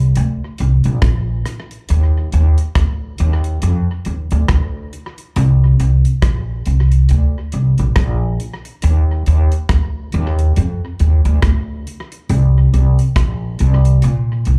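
A slow 69 BPM lovers rock reggae groove in 4/4 with a gentle 16th-note swing sets a tender, smooth mood in this roughly 14.6-second cut from a longer piece. A woody, growly pizzicato upright bass with steel strings sits up front from the start, ranging from Bb1 to Bb2. Joining at 0.2 seconds, a damped 70s drum kit brings dry hi-hat, a tight kick and rim clicks touched with tape echo, all heard as a live gig through the venue's PA with a bit of club reverb.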